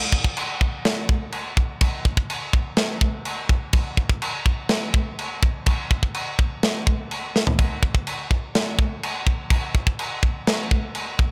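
A tight acoustic metal drum kit comes in at 0.1 s and carries this heavy, dark fragment of a longer piece by itself, in a straight 4/4 at 125 BPM. The kit uses kick drum, snare, toms and a china cymbal, with a tight kick and a medium-tuned snare set up front in a mid-forward balance. Its top end is rolled off, giving the cymbal work a rounded edge rather than a bright sheen. A drum fill stands out at 7.4 s before the groove runs on to the end at 11.3 s. The sound places the kit in a studio room with a light touch of reverb, keeping the performance close and warm.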